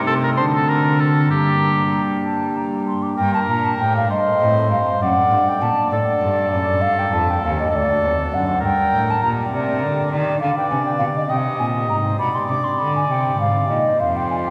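A baroque flute, a pipe organ on a smooth principal stop and a single bowed cello sound together from the start, joined almost at once by an oboe carrying the melody at 0.1 s in this grave, solemn baroque-style sonata movement with continuo. The pace is slow, at 66 BPM counted in dotted quarters, in a straight 6/8 that begins in G minor and turns to C minor at 10.4 s. The oboe leads as an up-front solo voice in a classical style, while the flute plays a second line above it with a pure, wooden tone, vibrato and tongued notes. Beneath them the cello gives a rich, reedy, period-style gut-string bass, and the organ accompanies with warm baroque voicing. The whole ensemble sits in a wet cathedral reverb that lingers for seconds in a church or concert-hall space, and the passage is a fragment cut from a longer piece.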